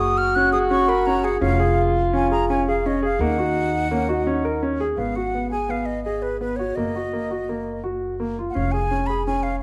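Contemporary chamber music in a restless, pensive 5/4 at 168 BPM in G# dorian, this fragment of a longer piece sets an airy, tongued silver flute melody with vibrato up front over long-sustaining grand piano arpeggios and a woody pizzicato upright bass, while a vintage-toned French horn carries a second line until 4.8 seconds, all within a moderate concert hall reverb and a dark, warm production.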